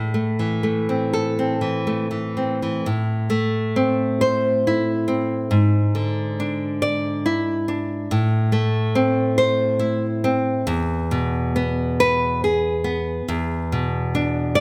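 Set in a moderate concert-hall reverb, this passionate, melancholic romantic fragment for solo nylon-string guitar is fingerpicked up front with a bright, full-bodied tone, moving with rubato and uneven beats in 3/4 through A minor and E-based harmonies, reaching E7/G# at 5.5 seconds and closing on a bare E7 at 13.2 seconds before the cut.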